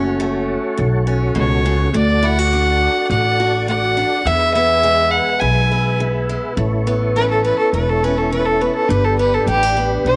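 Heartfelt and easygoing, this short cut from a longer honky-tonk and classic country piece moves at an unhurried 104 BPM in straight 4/4, centred on A major. A woody, thumpy upright bass sits up front from the start, alongside a bright, boxy parlour-style picked acoustic guitar and a smooth tonewheel organ whose chorus vibrato, key click and slow rotary speaker add gentle motion. The rich, earthy fiddle enters at 1.4 seconds as a single bowed voice with light vibrato, carrying the melody up front over chords that move from F#m through D and E. At 6.6 seconds the harmony opens onto Aadd9 and then G as the fiddle takes a solo through to the end. Light reverb and a small room ambience give the ensemble an intimate, close-knit feel.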